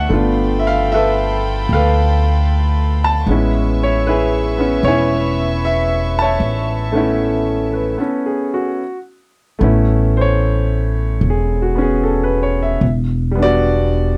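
Swung eighth notes in a relaxed 4/4 give this tender, intimate jazz ballad its gentle lilt. A bright, brilliant grand piano sits up front and carries the accompaniment throughout, joined by a woody, warm pizzicato upright bass played up front in the low register. Behind them, a distant, floating string section bowed sul tasto holds soft-attacked sustained chords until 8.0 s, when a stop marks the turn into the second section at 9.6 s. The harmony drifts through lush ninth chords, from G9 to Amaj9 and later Em9. The sound is dry and close, like a 1970s studio session, and this excerpt is cut from a longer piece.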